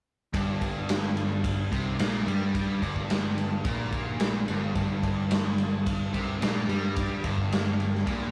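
A rough rehearsal-room recording with saturated grit and light reverb carries this gritty, driving blues rock power trio fragment with a southern rock edge, where a dark, double-tracked overdriven electric guitar riff sits up front alongside a bright, growling picked bass and a raw garage drum kit, also up front, whose punchy kick, medium-tuned snare and ride cymbal sound dark and rolled-off in a stone room.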